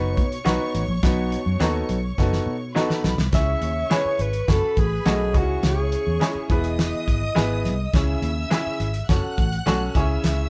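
Lightly reverberant and captured as a band playing live in one room, this uplifting 1960s-style soul passage rests on a gritty, saturated drum kit with a fat snare and a round, foam-muted electric bass, both sitting up front. A clear baby grand piano with audible action noise, slightly broken-up tremolo guitar stabs through a small old amp, and a lush, bowed violin section fill out the sound from the start, and a drum fill at 2.2 seconds leads into a jazz-style alto saxophone melody with vibrato. Entering alongside the saxophone at 3.3 seconds, a barely audible vibraphone with medium mallets adds an airy, ringing colour until 6.8 seconds.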